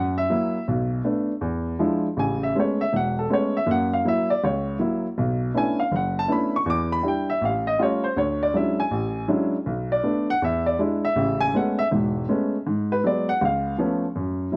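The recording is dry and close, with the intimate feel of a 1970s-style studio and a baby grand piano placed up front in a natural, warm tone. This is a short excerpt of solo jazz in A major, cut from a longer piece, moving at 160 BPM in 4/4 with a relaxed, swinging eighth-note feel. The piano carries everything alone from the start until about 14.1 seconds, ranging from a deep E1 in the bass up to D6. Its harmony is rich with extended and altered chords, opening on F#7, Bm7 and E7b9 before settling onto Amaj9 at 2.2 seconds. From there it winds through Bm11, an Aaug7 leading into Dmaj9#11, and back home to Amaj9, then turns toward G#m7b5 and C#aug7 as the passage ends.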